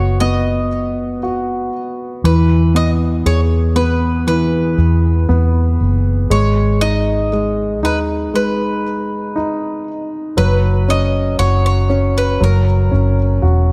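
A bright, picked bowl-back mandolin carries the melody on its doubled strings, set over a clear, intimate grand piano whose action noise is audible and whose notes ring with long sustain. Underneath, a vintage, foam-muted fingered electric bass sits round, amped and punchy up front, anchoring this hopeful, tender pop ballad at 59 BPM in 4/4 as it moves through B, E, G#m, F#5 and F#. Light reverb and a small-room ambience frame the dark, warm production of this short passage, which is cut from a longer piece.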